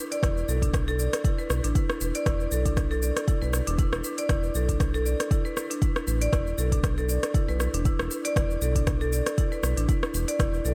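A woody, bright marimba with medium hard mallets on rosewood bars opens this earthy afro house excerpt, playing up-front arpeggios coated in vintage 12-bit sampler grit, sidechain pumping and a diffuse ambient delay. Smooth electronic hi-hats, a rim click and shaker from an afro-pop kit join almost at once, with a gentle swing on the sixteenths. At 0.2 seconds a deep, up-front electronic kick lands alongside a round analog bass whose mellow, evolving tone blends sawtooth, sine and triangle shades with a fast attack and sustained notes, pumping against the kick. The bass sits low and full under the percussive marimba, giving the groove a grounded, warm pull. Light reverb and digital ambience place the produced, electronic kit in a subtle space as the marimba, kit and bass carry on to the cut at 10.7 seconds.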